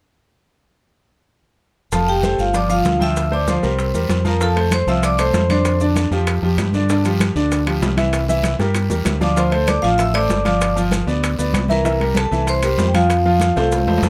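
Festive and danceable, this salsa excerpt sets a clear, boxy grand piano and a round, punchy fingered electric bass up front, while a bright, metallic vibraphone struck with hard mallets carries the melody in two phrases, from 1.9 to 5.8 seconds and again from 9.2 seconds. Behind them sit damped, high-tuned congas, tight vintage bongos and grainy maracas, alongside a raspy guiro. Ringing metal-shelled timbales join at 4.6 seconds, and drum fills arrive around 8.4 seconds and again near the close. Light reverb and close, detailed microphones keep the sound crisp as the chords move through Dm7, G7 and C7 before landing on F.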